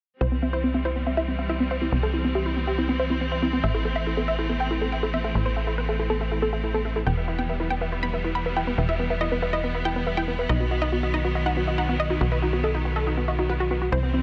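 Euphoric and driving, this trance excerpt at 140 BPM runs a chord cycle of C, Am, Em and B, anchored by a tight, punchy sequencer bass with a nasal, evolving sawtooth bite sitting up front. A lush, full-bodied unison pluck carries the melody through tape echo, while a second detuned pluck with a warbling, vintage edge spins arpeggios through dub echo, both under filter sweeps from 0.2 to 14.2 seconds. Beneath them a bright studio string section holds intense, vibrato-rich sustained chords through a low-pass filter, all set in light reverb.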